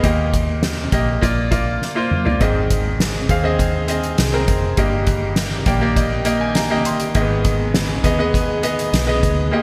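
Warm and uplifting, this short piano-driven pop excerpt moves in a straight, steady 4/4 with a bright 1980s-style digital sheen and a lush hall reverb. A brilliant, woody upright piano sits up front as the main accompaniment, close and intimate enough that its action noise is audible, and it takes a fill between 5.4 and 7.2 seconds. Underneath, a vintage foam-muted fingered electric bass gives a dark, round, punchy low end. The soft-mallet drum kit, also up front, pairs a fat snare and boomy kick with hi-hat and toms under gated reverb, playing a fill just before the second section begins at 2.4 seconds. An airy, breathy pad with a slow attack, long release and chorus enters at 2.9 seconds, sitting very quietly behind the piano as the harmony moves from Eb through Bb, Ab and Eb/G to Abm.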